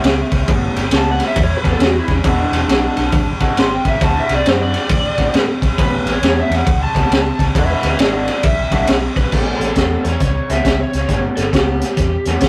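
Swaggering and gritty, this electric blues shuffle struts along in a swung 4/4 with the rough feel of a rehearsal-room recording. A lead guitar through a small cranked amp plays an overdriven, picked solo from the start until 9.3 seconds, ranging from A3 up to C6, before the piece moves into a new section. Beneath it, a second electric guitar through a small old amp plays a slightly broken-up, compressed riff bathed in spring reverb, while a vintage muted fingered bass adds a dark, round, punchy low end. The raw garage drum kit sits up front with a boomy kick, a high-tuned snare, hi-hat, ride and crash, its sound saturated and rolled off at the top. The changes cycle through A9, E9 and D9, and this clip, cut from a longer performance, carries light reverb and warm saturation.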